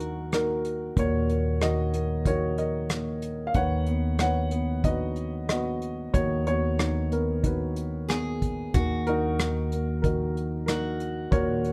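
A straight 4/4 pulse from a soft brush kit with a punchy kick, hi-hat and rim click carries this reflective, heartbroken acoustic folk-pop ballad excerpt, where a dark, mellow concert grand with short sustain sings the melody over a woody, growly pizzicato upright bass on Eb2 and Ebm and Badd9/D# chords, while a picked steel-string acoustic guitar adds arpeggios only from 0.0 to 1.9 seconds and again from 8.1 seconds, all in a close, dry sound.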